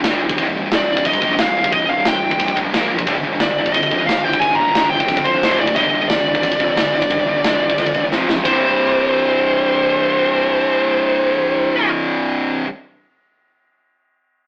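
Relentless and dark, this heavy metal excerpt charges ahead at 178 BPM in a straight 4/4, its chords moving through power shapes and a C minor under a rough rehearsal-room sound with an AM radio quality and moderate reverb. An up-front, bright high-gain guitar drives the riff with a growly fuzz bass in the background, while a tight acoustic kit with bright cymbals and a tight kick pounds until a drum fill at 8.1 seconds and drops out at 8.5 seconds. A warm high-gain lead guitar sings its melody high above from 0.8 seconds, and a very quiet distorted rhythm guitar joins with a riff of its own from 3.1 seconds.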